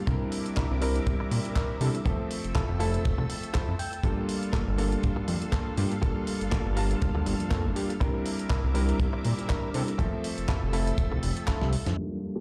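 A fat, detuned analog bass sits up front in this groovy, cosmic nu-disco excerpt, joined by a warm electric grand piano with tape echo, a twangy clean guitar riff with a fill at 3.3 seconds, lush sustained string machine chords, a tight dry kick and a gritty sampler-style kit of snare, hi-hat and handclaps that closes on a drum fill and band accent near 12 seconds, all over a swung groove and C9 to Fmaj7 to Gm9 chords, played in a bare room and bathed in large studio reverb.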